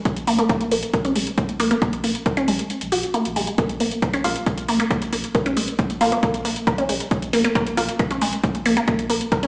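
Intense, dark peak-time techno excerpt at 136 BPM in Bb minor, driven by a punchy, up-front kick and metallic pumping hats, with a deep round sub bass sitting in the background, a juicy, squelchy resonant blip pluck riff from Ab3 to Bb4 carrying phaser, tube saturation and tape echo, filtered dub chord stabs with lush chorus appearing from 4.2 to 7.9 s, a filter sweep across the synth arpeggio, a break at 2.7 s, and a wet stone-room reverb heard through small speakers on a big system in a bare room.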